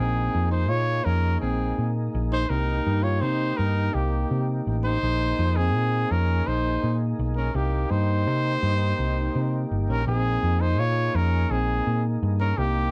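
Driving and brooding, this progressive instrumental excerpt moves at 167 BPM in 7/4 with a straight feel. A clear trumpet with light vibrato carries the jazz-style melody over a raspy, growling alto saxophone second line and a smooth tonewheel organ with chorus vibrato, all anchored by a round, up-front hollow-body short-scale picked electric bass, as Bbm11 and Cm7 alternate in a dark production with light reverb.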